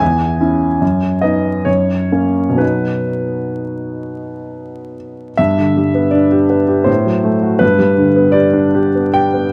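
A clear, intimate grand piano opens this brief fragment of a lyrical, passionate romantic character piece, moving in a flexible, rubato triple time across a range from the low bass to the upper treble with long sustain and audible action noise. At 5.4 seconds the music turns to a new key for its second section, and the piano stays up front and polished through to 9.5 seconds. Close, detailed microphones catch the instrument within a moderate recital hall reverb, with vinyl crackle beneath.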